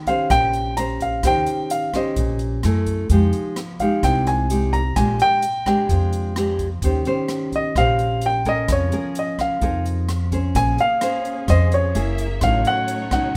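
Bossa nova at 129 BPM with a wistful, melancholic mood, cut from a longer piece, in which an up-front fingerpicked nylon-string guitar and a woody pizzicato upright bass support a short-sustain grand piano melody in the upper register, an airy drum kit with a punchy kick marks time on hi-hat and rim click, and a lush bowed string section with vibrato and portamento enters at 10.5 s as the harmony moves from Eb6 toward Bbm9 and an F7b9b13/A under light reverb.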